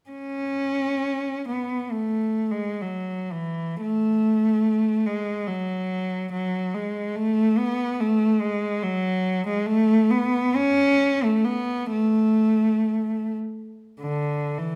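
Lyrical and nostalgic, this short classical excerpt features a single bowed cello playing alone, moving freely in an expressive rubato. The cello sounds rich, smooth and even, with vibrato and a close, up-front presence, singing through its middle register from 0.1 to 14.8 seconds. A wet recital hall reverb surrounds the instrument, letting each phrase bloom into the space.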